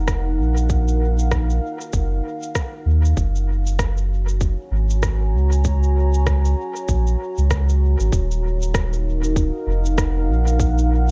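A round, soft sub bass sits up front in this spacious, deep ambient dub fragment, under a moody, detuned sawtooth pad with chorus and built-in reverb that shifts chords at 3.2 seconds, while a tight, tape-warm electronic kick and a rim click and shaker steeped in dub echo, both re-recorded in a large room, move with a swung sixteenth-note feel through an echo-heavy mix with a muted top end.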